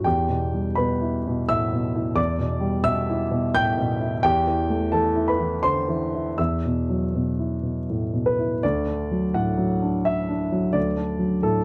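A solo grand piano carries this short neoclassical minimalist excerpt in a reflective, melancholic mood, set in three-four time with a rubato feel. The piano's tone is warm and up front, with short sustain, and it spans a range from D2 to G6. The harmony moves from E minor through A minor over an E bass and a suspended E chord before shifting to D at 8.6 seconds, where a second section begins. Close, detailed microphones capture the instrument in light reverb, lending the playing an intimate presence. The recording is cut from a longer work and ends at 11.6 seconds.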